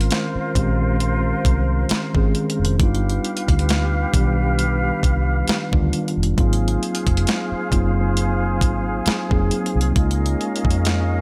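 A dry, close-sounding cut from a longer piece of contemporary R&B, romantic and dreamy at a relaxed 67 BPM in 4/4 with a light sixteenth-note swing in Ab major. Up front, a clean 12-bit drum machine with a tape-warm, sampler-style character sets a thumpy kick, medium-tuned snare and hi-hat against a dark, round, foam-muted fingered electric bass with a punchy edge. A mellow tine electric piano, heard as if through its built-in speakers, and a large flute ensemble holding pure, soft-attack chords with expressive vibrato carry the harmony through Bbm11, G7b13, Ab13 and Db69.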